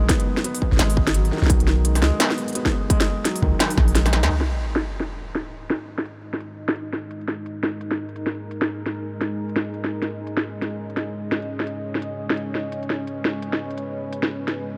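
A half-time drum and bass groove at 171 BPM with a 16th-note swing sets a tense, dark mood in this cut from a longer piece, as a soft, felt-muted upright piano plays arpeggios with tape echo over a deep, mellow 808-style bass, a distorted electronic kick and an overdriven industrial kit with clanging snare and crisp, filtered hats, until a drum fill and band accent give way at 4.3 seconds to an electronic sub drop, after which the industrial kit drives on beneath a moody, detuned sawtooth ambient pad with chorus, 12-bit sampler grit and sidechain pumping, all in a light reverb.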